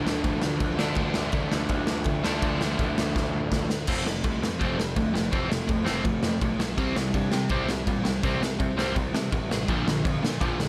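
A rowdy, upbeat slice of punk rock, cut from a longer piece, driving along in a straight 4/4. A biting overdriven guitar, double-tracked and up front, carries the riff, moving from D minor through F and a C power chord to B-flat. Beneath it, a fuzz picked electric bass growls low in the mix, direct and amped with overdrive. The raw garage drum kit enters at 0.1 seconds with boomy kick, medium-tuned snare and crash cymbal, sounding saturated and gritty in a bright stone room that pumps, its top rolled off. A drum fill at 3.1 seconds carries the music into a second section at 3.9 seconds, and the whole recording stays close and dry with little reverb.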